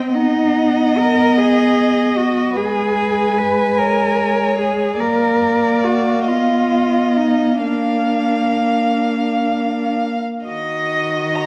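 Set in a flexible 6/8 with plenty of rubato, this slow, romantic string quartet movement, cut from a longer piece, feels yearning and solemn. The first violin sings the melody with a dark, woody, distant tone, while the second violin traces a rich, focused line above the up-front viola's smooth, even accompaniment. The close, warm cello carries the bass with expressive portamento, and every bowed voice uses vibrato within a wet scoring-stage reverb.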